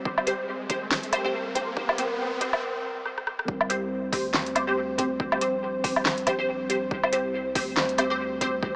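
Opening on a dark, moody analog pad holding sustained chords through a filter sweep, alongside an electronic riser, this short excerpt from a longer deep dubstep piece sets a cavernous, meditative tone at 140 BPM in a swung, half-time 4/4 feel. An overdriven electronic kick with a punchy, layered character and an up-front deep house kit of fat snare, metallic hats, handclaps, rim clicks and woodblock come in almost at once, while a filtered dub chord stab, muted and detuned with a quick pluck, adds phaser, ensemble chorus and dub echo. The riser stops at 2.6 seconds for a brief break, and a drum fill leads into the drop at 3.5 seconds, where a thick, mellow sub bass enters in the background. The pad's sub octave and slow attack, softened by chorus, give the drop a deep, enveloping bed beneath the stabs. A huge ambient reverb surrounds the mix, yet a high-pass filter and small-speaker character keep the overall sound thin and boxy.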